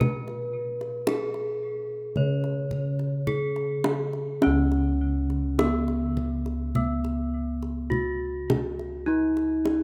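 A bronze metallophone, bossed gongs and kendang sound together from the very first moment of this brief Javanese gamelan fragment, cut from a longer piece. It moves at a slow, stately 52-57 BPM in a straight 4/4, tuned to a slendro scale on Db, with a ceremonial, shimmering mood. The metallophone carries the melody with a ringing, metallic bronze tone struck with a horn mallet, its boxy small-room character and tape echo sitting close and up front. Beneath it, the bossed gongs hold the bass with a round, beating, bright sound that reaches from Db2 up into the middle register. The kendang adds tight, acoustic percussion with a live-room feel. A moderate plate reverb gives the rough home demo mix some space, and the music shifts into a new section at 4.4 seconds before the fragment ends at 9.8 seconds.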